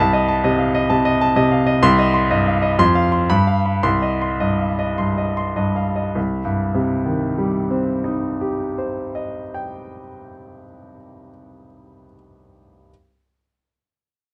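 A classical virtuoso piano study in a stormy, passionate mood, this short excerpt is taken from a longer piece and moves in a flexible rubato within four beats to the bar. A grand piano plays alone throughout, from 0.0 to 12.9 seconds, ranging from deep bass notes up into the high treble. Its tone is warm, present and polished, placed up front by close, detailed microphones and a light touch of reverb. The harmony circles a minor home chord, passing through a bare open fifth and a tense dominant seventh before settling back at 3.8 seconds. The pace slows from 0.9 seconds until 6.2 seconds, where the opening section gives way to a contrasting passage that runs to 10.7 seconds.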